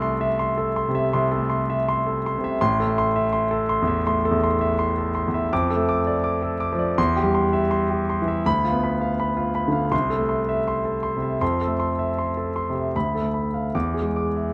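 A clear concert grand piano, captured up close with its action noise audible, carries this romantic classical character piece alone across its 14.5 seconds, ranging from a deep bass A1 up to D6 with long, ringing sustain. The bittersweet, stormy mood unfolds in a flexible rubato, with harmonies drifting through minor and diminished colours before settling on an E7 at 13.7 seconds. Light reverb keeps the polished, intimate sound present and up front in this fragment of a longer work.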